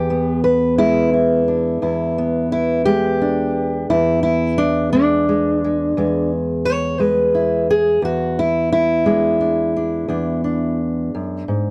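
Set in light reverb with a dusky, mellow production, this short cut from a longer acoustic country blues piece is a laid-back yet rollicking E mixolydian passage at 58 BPM in a straight 12/8, where a single up-front fingerpicked steel-string acoustic guitar plays alone over an E7 chord from 0.0 to 11.7 seconds, ranging from its low E2 to C#5 with an audible finger squeak.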